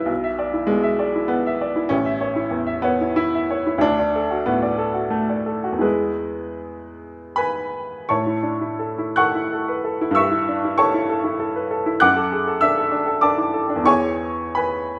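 Romantic classical character piece for solo upright piano in A major, hopeful and lyrical, in 3/4 with a rubato pulse ranging from 71 to 101 BPM, the clear, woody, vintage-toned piano sitting up front with short sustain across a span from A1 to F#6, its simple progressions through A, D and E turning toward A7/G and D/F# after 8.1 seconds, all set in a moderate recital-hall reverb in this fragment cut from a longer work.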